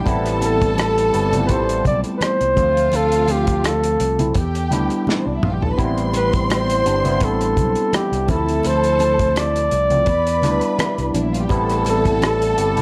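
Lush 1970s-style soul in A minor at 84 BPM, smooth and silky, with a gentle 16th-note swing as the chords move through Am7, Dm7 and Em7. An up-front, close-miked flugelhorn with light vibrato carries the melody from 0.4 seconds over a dark, bowed string section, a barky, gritty tine electric piano through a combo amp with phaser, and a growly fingered electric bass. A warm soul drum kit with a tight kick and a drum fill at 5.1 seconds sits alongside very quiet, thick-skinned congas in light reverb and small room ambience.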